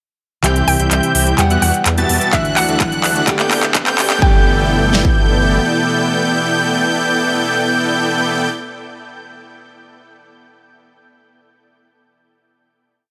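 Festival progressive house at 127 BPM in G major, anthemic and uplifting, this short piece builds from 0.4 seconds over crisp programmed hats and claps, a driving detuned saw bass, a dense compressed supersaw riff in dotted-rhythm chords with dub echo, a bold wave-folded unison lead arpeggiating an octave higher, and a fingerpicked plugged-in steel-string acoustic guitar holding chords with syncopated pushes, these four pumping against the sidechain. A hollow, bouncy square pluck hook follows in the background and a very quiet lush pad joins, and a four-on-the-floor kick with a huge snare arrives at 2.3 seconds as a faint riser leads into a final G69 chord ringing from 4.2 seconds.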